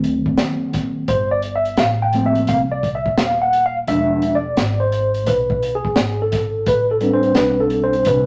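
A swung sixteenth-note groove in 4/4 drives this smoky, cool jazz-hop fragment, with a crunchy breakbeat kit of punchy kick, high-tuned snare and hi-hat sounding gritty, saturated and dark, its top rolled off, in a small room. A woody pizzicato upright bass holds the low end while a mellow, clean tine electric piano sits up front and takes a solo across the full 8.3 seconds over D7b9, Gm11, E7b9 and Am11 chords. Moderate studio reverb gives the whole a soft sense of space.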